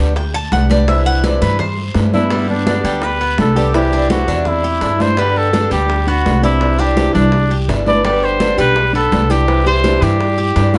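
Relaxed and danceable, this short cut from a longer Cuban son and guajira piece opens with a dark, boxy fingerpicked swing-style acoustic guitar and a woody, thumpy pizzicato upright bass up front, while a metallic, double-strung Cuban tres soloes in picked arpeggios. Soft-handed congas with a thick skin, tight high-tuned bongos and a raspy guiro sit in the background. At 2.1 seconds a punchy, vintage-toned trumpet with light vibrato takes the melody up front, joined by a thumb-plucked classical nylon-string guitar playing a second line, all over moderate studio reverb as the chords alternate between G and Cadd9.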